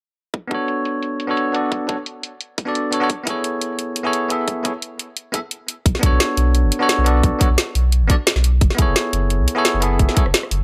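A rolling liquid drum and bass groove at 174 BPM in straight 4/4 drives this melancholic passage cut from a longer piece, with a tight electronic kick and a layered kit of bright, low-pass filtered hi-hats, rim click and a woody snare sitting up front, both re-recorded in a small room. Over this, a bell-like tine electric piano accompanies with a clean, direct tone between B3 and E5, shaded by a low-pass filter and a digital delay, as the harmony moves from Bm9 to B13sus4. At 5.9 seconds the drop arrives and a round sine sub bass enters between F#1 and C#2, its fast attack and sustained, mellow tone adding depth beneath the kit as the harmony returns to Bm9 before shifting to F#m11. Light reverb and a digital ambience give the production a polished, intimate sense of space.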